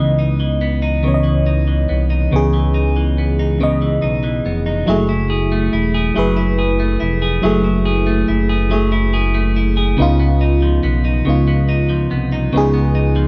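Light reverb gives this short cut from a longer piece a late-night atmosphere. It is a slow six-eight R&B groove with a straight feel and a yearning mood. A dark, gliding synth bass sits up front, its sawtooth and square-wave tone sustained and sliding between notes with portamento. A mellow FM electric piano carries the accompaniment with a round, decaying tone, a noise layer and a chorus effect. A clean electric guitar adds a bright, twangy picked second line a little further back. The harmony moves from C#m9 to F#m9 at 4.9 seconds, then to C#9 at 10.0 seconds, with the bass, piano and guitar playing throughout.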